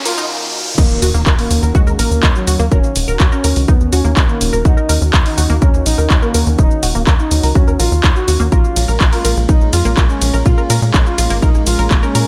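A punchy, tape-warm kick sits up front from 0.8 s, where a riser and noise sweep give way to an impact and the drop in this melancholic, hypnotic melodic techno excerpt in Eb minor at 124 BPM. A nasal sawtooth sequencer bass, a detuned, phaser-coloured arpeggiated synth and a lush, warbling unison pad all pump with sidechain, while an analog drum machine in a large room adds crash, ride, hi-hat, shaker and handclaps. A smooth, dark synth lead with vibrato and delay carries the melody over Ebm7, moving to Bbm7 at 8.5 s, and a very quiet, ethereal airy pad surfaces briefly at the start and again near the end.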